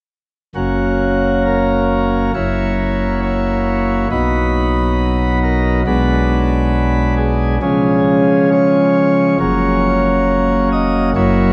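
A chamber organ's principal chorus sounds alone from 0.6 seconds, full and up front with a touch of chiff, playing a serene, majestic chorale in F# major at a rubato 68 BPM in 4/4. Its harmony moves from F# through F#7, B, G#m7b5/B and C# before settling back on F# near 9.4 seconds, with the voicing reaching from deep in the bass up to D#5. A long, wet cathedral reverb and a dark production surround this short extract from a longer piece.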